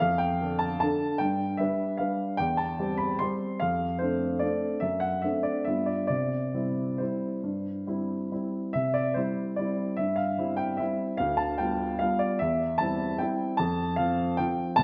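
A woody upright piano sits up front, playing a playful, elegant classical waltz alone in a lilting three-beat metre with a supple rubato feel. Its phrase is heard once and then returns at 8.8 seconds, moving through gentle turns such as D7/F# to G7 before settling on C at 6.1 seconds and closing the fragment on F. A lush recital-hall reverb gives the instrument a natural bloom, and the passage is cut from a longer piece.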